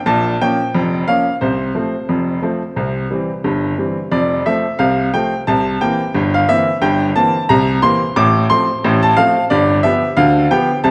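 A lightly swung two-beat ragtime pulse drives this playful, lively solo on a bright, woody upright piano that sits up front and ranges from deep bass to high treble, moving through chords such as Bbm, F/C, C7/G and G7 inside the wet reverb of a church or concert hall for this short excerpt cut from a longer piece, which runs to 10.9 seconds.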